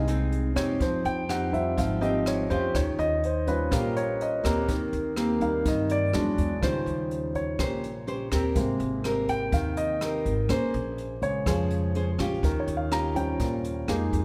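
A moderate recital-hall reverb surrounds this short bossa nova passage, giving it the natural bloom of a church or concert hall. At 124 BPM in a straight 4/4, the mood is smooth and melancholic, and the clip is cut from a longer piece. A polished grand piano sits up front and carries a solo for the full 14.2 seconds, while a fingerpicked nylon-string guitar, also up front, adds classical-style accompaniment in a warm tone. Underneath, a pizzicato upright bass with gut strings gives a woody, thumpy pulse, and a jazz brush kit enters at 0.1 s with an airy small-room sound, hi-hat, rim click and a punchy kick. The harmony moves through rich extended chords, opening on Fm7 and passing through Dbmaj9#11/F, Eb9, Abmaj9 and Bbm9 before settling back on Eb9.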